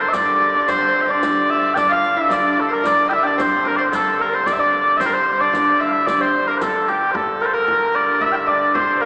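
Heard through a small speaker with vinyl crackle, this short cut from a longer medieval dance sits in the wet reverb of a church or concert hall, its 3.0-second tail lending it an ancient air. The tempo is a driving 112 BPM in a straight 2/4. Mellow, sweet small bagpipes carry the continuous melody up front with vibrato, while a bright, smooth-topped shawm in folk style adds a second line just beneath. A delicate, fingerpicked lute with gut double strings, some doubled at the octave, plays another supporting line, over a rich, even hurdy-gurdy drone that is wheel-bowed and keyed by one player in the background. Close, dry percussion sits back in the mix, with a warm frame drum and a riq with bright jingles, played with hard hands. The riq stops at 7.0 seconds, just before the music moves into a new section at 7.1 seconds.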